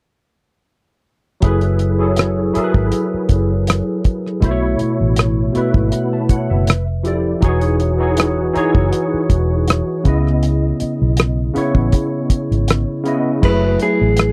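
A dry, close 1970s-style studio sound with hardly any reverb frames this late-night, introspective neo-soul R&B excerpt at 80 BPM in F# dorian, with a light 16th-note swing over chords moving from F#m11 through B9sus4, Fmaj13, Emaj13 and C#m9. From 1.4 seconds, a barky, lightly overdriven tine electric piano with ensemble chorus sits up front beside a cloth-damped, thuddy drum kit with a tight kick and rolled-off top, playing crash, hi-hat, kick and rim click, while a vintage muted fingered electric bass adds a round, punchy low end. At 13.4 seconds, as the harmony returns to F#m11, a slightly broken-up, lo-fi electric guitar through a small old amp enters with a brief picked, compressed melody.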